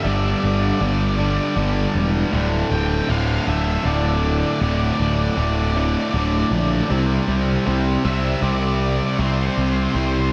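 Post-rock in a slow 3/4 at 79 BPM, brooding and cinematic, this excerpt sets a dark, fuzzy octave-fuzz lead guitar carrying the melody through analog delay above a bright, double-tracked distorted guitar riff and a round, punchy overdriven bass, both up front, all three playing throughout the 10.3 seconds in a dreamy mix drenched in a huge ambient reverb.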